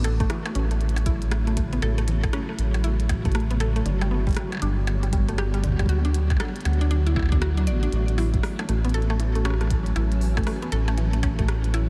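IDM in a playful, intricate mood, with a swung groove where a woody, bright FM mallet pluck spins arpeggios through chorus, phaser and tape echo over a blurred granular cloud pad with 12-bit grit, a round, dark analog bass up front, a deep electronic kick entering at 0.2 seconds, and a glitchy kit of clicky hats, percussion blips and rim clicks trailing analog delay, all set in light digital ambience.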